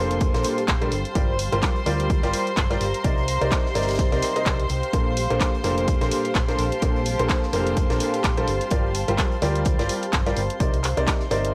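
Uplifting, feel-good piano house with a swung groove, built on an up-front, woody upright piano riff with audible action noise and analog delay. A punchy, tape-warm electronic kick, analog drum-machine handclaps and hi-hat, and a very quiet, airy acoustic kit's snare and hi-hat drive it along. A round, amped hollow-body electric bass with tube saturation sits beneath. Soft-attack bowed violins sustain floating chords, and a blurred, detuned granular cloud pad hangs in the background. Every melodic part pumps with sidechain in a small, gritty room as the chords cycle through Bbmaj9, Gm7 and Cm9 in this short cut from a longer piece.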